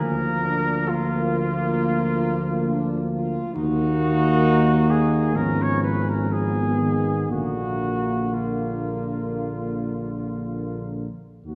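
A flugelhorn with warm vibrato carries the melody up front in this elegiac, solemn, hymn-like brass band piece, a short passage cut from a longer work that moves with rubato in 4/4 at around 56-69 BPM. A French horn section sings a second line in the background while two mellow euphoniums, one with light vibrato and a soft attack, fill out the accompaniment, and a dark, close-miked tuba anchors the bass up front. The flugelhorn, horns and first euphonium sound distant and roomy in a wet concert hall with a 1.9 s reverb, heard from further back in the room.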